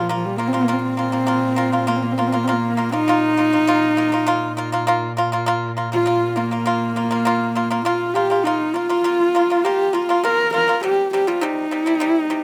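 Recorded outdoors with a light reverb, this short cut from a longer Mongolian folk piece sounds vast and proud. It moves at a straight 101 BPM in 4/4 in a Bb zhi mode. A dark, husky horsehead fiddle carries the melody up front, its woody, close tone shaped by vibrato and portamento and given a slapback echo. Beside it, a bright, dry pipa played with fingerpicks picks out percussive arpeggios, also up front and also treated with slapback echo. Beneath them, a dark cello bowed sul tasto holds a soft-attacked, intimate drone on Bb2 with vibrato and a smooth top, dropping out at 8.5 seconds. The harmony rests on Bb5 before shifting to C5 at 10.8 seconds, as the fiddle and pipa carry on to the end at 12.4 seconds.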